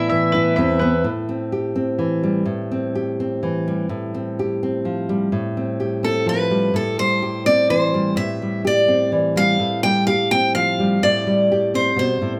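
Acoustic folk in 3/4 at 126 BPM, this short cut from a longer piece sits in A minor and carries a haunting, reflective mood. A nylon-string guitar plays classical-style fingerpicked accompaniment throughout, its warm tone up front and reaching from the low register into the middle. A mandolin opens with round, double-string arpeggios and falls away by 1.1 seconds. A picked steel-string acoustic guitar offers a brief touch at the start, then returns at 6.0 seconds to carry the melody with a bright, boxy parlour voice, fresh strings and audible finger squeak. The harmony moves between minor chords with added ninths and sevenths and an F chord over an A bass. Close, detailed microphones place every part near the listener, while a moderate large-studio reverb gives the sound some space.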